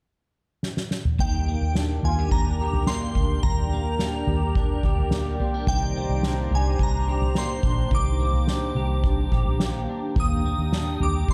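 Dark, lightly reverberant studio ambience frames this blissful, dreamy dream pop excerpt, where an up-front soft-mallet drum kit with a fat snare and punchy kick plays a fill at 0.6 seconds before, at 1.2 seconds, a round, foam-muted vintage electric bass, a smooth, detuned sawtooth analog pad with a slow attack, a picked, slightly broken-up electric guitar playing compressed arpeggios through ensemble chorus and tape echo, and a shimmering, bright FM bell melody carrying that same chorus and echo come in together over chords moving from Ebmaj7 to Cm9 and back.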